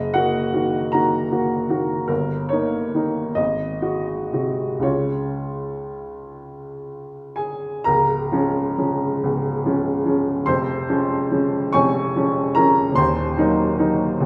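Melancholic and yearning, this romantic classical nocturne in Db major moves slowly in 12/8 at 38-52 BPM in dotted quarters, with a free, rubato feel. A solo upright piano, woody and up front, ranges from Db1 to Db6 in this fragment of a longer piece, passing from Ebm/Gb through Eb7/G and Ab7 to settle on Db at 4.8 s, before a second passage begins at 7.9 s and turns toward Ebm at 13.0 s. A wet recital hall reverb with a 1.8-second decay surrounds the instrument.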